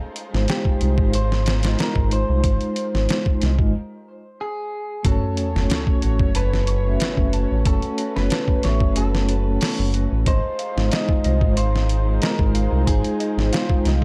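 A veiled, con sordino violin section opens this hypnotic, smoky trip hop excerpt, bowing lush, dark sustained chords in the background over a G#6 harmony. A compressed, pitched-down sampler-style drum kit follows almost at once at 92 BPM in a straight 4/4, with a thumpy kick, medium-tuned snare and hi-hat sitting gritty and up front. A round analog bass blending sawtooth, sine and triangle tones anchors the low end with a detuned, evolving, deep sustain. Soft-mallet vibraphone rings with a metallic shimmer and motor vibrato, while a picked electric guitar at the edge of break-up carries the tape-echoed melody. After a break, the harmony moves to F#m at 5.0 seconds, where a very quiet electronic sub drop lands and a thumb-plucked concert harp enters in the background with arpeggios coloured by 12-bit sampler grit and tape echo. G#6 returns at 10.3 seconds, all captured in a dry, small-room hardware recording.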